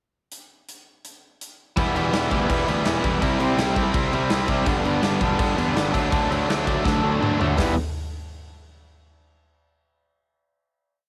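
Urgent and aggressive, this short punk rock piece is a complete song in 4/4 with a straight feel. An acoustic drum kit opens alone at 0.3 seconds with a pickup bar, its bright cymbals, medium-tuned snare and punchy kick set up front in a fast punk groove. At 1.8 seconds a crunchy, double-tracked electric guitar enters with driving eighth-note barre chords over Em, C, G and D. A growly fuzz bass joins it there, pushing eighth notes through overdrive and transformer saturation. A drum fill leads into a final Em chord at 7.6 seconds. The drums and guitar carry a cassette-tape grit, and the home recording sounds dry.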